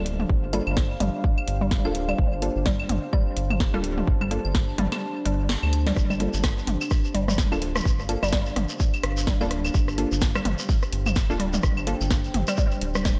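A round, sidechain-pumped analog bass and a deep, moody ambient pad with chorus and built-in reverb open this quirky, sparse stretch of swung minimal techno at 127 BPM, soon joined by a booming analog drum machine with crisp snare and metallic hats, a delayed organic electronic kit of claves, rim clicks and toms, a punchy up-front electronic kick, a hollow, nasal square pluck riff with chorus and tape echo, and a digital wavetable chord stab under a filter sweep in the background; the kick drops out at 5.0 seconds for a short drum fill, and at 6.0 seconds a very quiet, gritty sampler-style soul kit and a grainy, close shekere arrive, all under light digital ambience.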